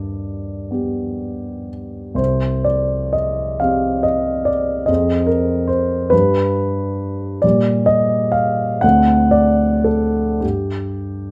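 An intimate, vintage-toned concert grand sits up front in light reverb, its smooth tone resting on a deep bass with the piano's action audible. This brief passage, cut from a longer romantic nocturne in C minor, moves in a slow, rubato 6/8 at 35-50 BPM in dotted quarters, with a wistful, melancholic mood. The solo piano spans C2 to F#5 and passes through harmonies including F minor, G minor and D7.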